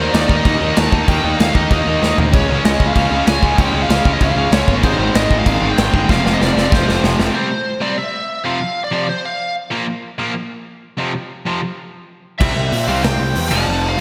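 A driving straight 4/4 punk rock pulse at 191 BPM opens this rebellious, rowdy clip, where a big, up-front acoustic drum kit with a punchy kick and pumping room sound crashes through fills before dropping into half time at 7.3 s, settling into F major as the drums cut out until returning at 12.4 s. A biting, overdriven lead guitar with digital delay carries the melody over a stack of picked riff guitars, a cranked, bright one and a tight distorted one with slapback echo sitting in the background, plus a very quiet double-tracked part, all anchored by a growly fuzz bass. Lush hall reverb gives the whole cut a big arena sound.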